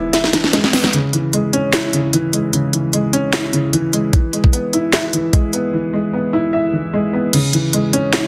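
A half-time trap groove at 150 BPM in 4/4 opens with a drum fill that runs until 0.9 seconds, built from a knocking kick, sharp snare, crisp hi-hats, handclaps and a crash cymbal on an electronic, tape-warm kit placed up front. This hip hop excerpt in C# minor feels melancholic yet hard-hitting, and the kick drops out from 7.3 seconds to the close. A short, punchy 808-style bass with a sine body and a noise layer sounds only briefly in the background at the very start, its fast attack decaying by 0.5 seconds. Also up front, a dark grand piano plays the accompaniment throughout with a mellow, worn and intimate tone, boxy and short in sustain, its action noise audible and its top softened by a low-pass filter. The harmony moves from E to C#m, back to E and returns to C#m. Light reverb surrounds a dense, heavily limited modern master.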